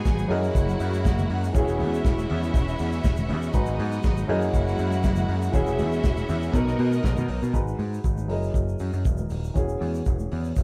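A straight 4/4 disco groove at 120 BPM drives this glamorous, danceable clip from a longer piece, built on a dark soul drum kit with a tight kick and an overdriven, round picked electric bass up front, with an intimate grand piano whose action noise is audible, lush bowed violins carrying a second line and a focused string section holding sustained chords until both stop at 7.5 s, while very quiet soft-handed congas and a grainy egg shaker sit in the background of a live band sound in a moderate stone room, over chords moving through F#13, E69, G#m7 and Bmaj7.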